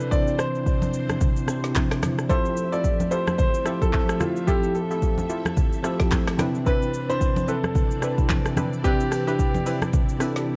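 Soulful and relaxed, this amapiano excerpt at 110 BPM in F lydian sets an intimate concert grand piano melody with tape echo over bell-like tine electric piano accompaniment through a phaser, sustained string-machine violas with ensemble chorus and sidechain pumping, an up-front deep house kit of deep kick, woody snare, handclaps, rim click, shaker and hats, ringing close congas from 0.8 s, and crystalline wavetable pluck stabs entering at 2.3 s, all wrapped in light reverb and the warbling pitch drift of worn cassette tape.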